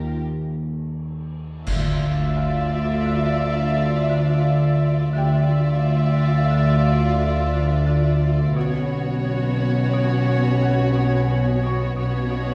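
Heard from further back in a scoring-stage reverb, this ominous, uneasy cinematic suspense cue in D dorian moves at 87 BPM in 5/4, with a bright, hard-mallet marimba riff sitting prominently over sul tasto strings: a pure, floating, soft-attack violin section carrying the melody, a second violin line with light vibrato, and a woody viola section in accompaniment. Beneath them, bowed cellos and double basses hold the bass in the background alongside a slowly evolving analog drone of sawtooth, pulse and sine tones with chorus, while a felt-muted upright piano adds soft texture with audible action noise. After a break, a band accent at 1.7 s brings in a mellow, vintage-toned French horn section with sustained chords, and clash cymbals with concert bass drum briefly strike from 1.7 to 3.0 s as the harmony shifts from Ebsus2 to Dmadd9 and later Bsus2.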